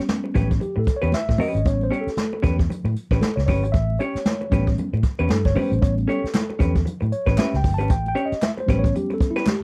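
A mellow tine electric piano takes the lead with clean, direct stabs over a single A9 chord, setting a funky, strutting mood in this short excerpt cut from a longer funk groove with a swung sixteenth-note feel. Up front, a dark, round, foam-muted fingered bass holds the low end beside a brushed drum kit with a boomy kick, sounding roomy and distant, while a compressed, picked clean electric guitar adds accompaniment. Very quiet, bright congas sit underneath, crisp group handclaps join in the background at 6.3 s, and vinyl crackle colours the dry mix.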